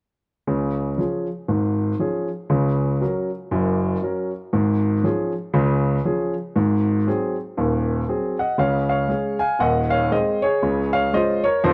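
A clear grand piano sits up front and carries this short stride jazz passage on its own from 0.5 to 11.7 seconds, reaching from deep Eb1 up to Ab5. The mood is swinging and playful, moving at 118 BPM in 4/4 with a moderate swing on the eighth notes, in Db major. The first section runs until 8.6 seconds, moving from Db through Gb/Db and Db/Ab before landing on an Ab7. A second section then begins and cycles briskly through Db, Ab/Eb and back to Db before the clip ends, cut from a longer piece. The sound is dry and close, with a touch of studio reverb, in the manner of a 1970s studio recording.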